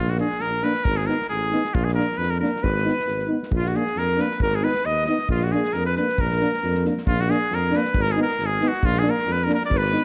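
Heard through light reverb and the worn, warbling pitch drift of an old cassette tape, this short excerpt of Balkan brass band folk moves at 135 BPM in a swung 2/4, bittersweet and virtuosic in Bb phrygian dominant as the harmony alternates between Bb and Abm. A bright trumpet with light vibrato carries the classical-style melody up front over a mellow, tube-saturated tuba bass with a smooth top, while an acoustic small-room drum kit played with bundle sticks adds a punchy kick and a medium-tuned snare. Two euphoniums, one distant and roomy, the other soft in attack, hold accompaniment in the background, and a distant alto saxophone with vibrato plays a second line from 2.6 to 6.9 seconds before returning at 9.8 seconds.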